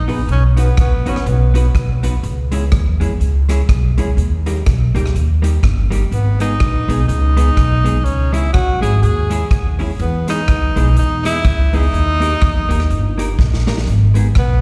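A woody, thumpy upright bass and a breathy tenor saxophone open this mischievous, driving ska excerpt at 124 BPM in 4/4 with a swung eighth-note feel, joined almost at once by drums and guitar. The saxophone carries the melody with clear tone and vibrato, drops out at 2.0 seconds, and returns at 6.1 seconds through tape and slapback echo. Underneath, the pizzicato gut-string bass sits up front and dark, while the street-band drum kit brings an airy, polished sound with a boomy kick, medium-tuned snare, hi-hat and rim clicks. A clean, compressed vintage hollow-body jazz guitar adds picked accompaniment further back, also touched with tape and slapback echo. The chords move from B through C#m, D#, G#m and E, and a drum fill at 13.4 seconds leads back to G#m, all heard as a live gig through the venue's PA with a recital-hall reverb.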